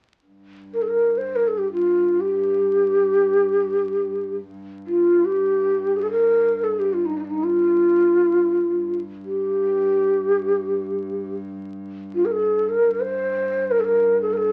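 A warm bowed double bass opens at 0.3 s with a smooth, even G2 drone carrying gentle vibrato, and at 0.7 s an end-blown reed ney enters up front, breathy and mellow, singing a soulful, melancholic free-time melody in the Persian dastgah of shur on G, tongued and expressive with vibrato, all set in a short studio reverb and heard through the crackle of a very old 78 rpm record in this fragment of a longer piece.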